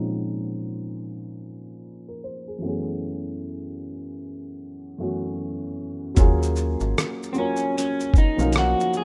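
Swung sixteenths at 76 BPM in 4/4 give this hazy, nostalgic lo-fi hip hop excerpt in Eb minor its lazy sway. A soft, felt-muted upright piano opens alone, dark and intimate with audible action noise and a cassette-tape, filtered haze, moving through minor eleventh chords under a filter sweep. At 6.2 seconds a thumpy, compressed sampler-style kit of kick, hi-hat, rim click and shaker arrives with a metallic, fast-decaying FM bass, and at 7.3 seconds a picked electric guitar through a small old amp, slightly broken-up with subtle chorus, carries the melody up front in a rough, lightly reverberant demo mix.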